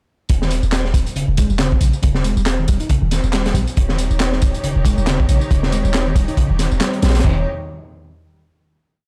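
A deep, boomy 808-style bass and a crunchy, saturated breakbeat kit open the piece at 0.3 s, the looped break with edits sitting up front with a tight kick, high-tuned snare, toms, hi-hat and dark china cymbal under a rolled-off top. This is a raw, gritty breakbeat track at 138 BPM in 4/4 with a swung sixteenth feel, built on a single Eb7 chord through a short drop. Behind the break, a quieter electronic garage layer adds handclaps, ride cymbal and tambourine, while the bass plays a dotted rhythm with a fast attack and a noise layer over its sine tone. A reedy electric piano enters at 0.4 s with a 32-step repeating sequence, its fast tremolo, 12-bit sampler grit and digital delay coloring the riff. At 3.8 s a lush bowed string section arrives with sustained chords, its vibrato pad pumping against the sidechain, and the piece closes on a final chord from 7.2 s in a dark, dry production.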